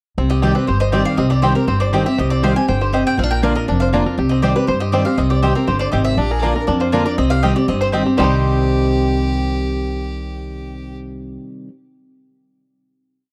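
A short, driving bluegrass piece with a lonesome edge opens at 0.2 seconds with picked steel-string dreadnought guitar, bluegrass banjo and upright bass together. The guitar sits up front, alternating bass notes and strums with bass runs, while the twangy, percussive banjo rolls arpeggios with three-finger fingerpicking and the thumpy, woody upright bass plays a two-beat root-and-fifth line with walk-ups. A mandolin carries the melody as a fiddle tune in running eighth notes on double strings, and a second mandolin adds a steady chop on the off-beats. From 6.2 seconds a single clear, earthy fiddle enters with light vibrato, bowing answering phrases in the melody's rests under a slapback echo. The harmony moves between C minor and B-flat before the band lands on a final chord at 8.2 seconds. The sound is dry and close, with a 1970s-style studio feel and small-room ambience.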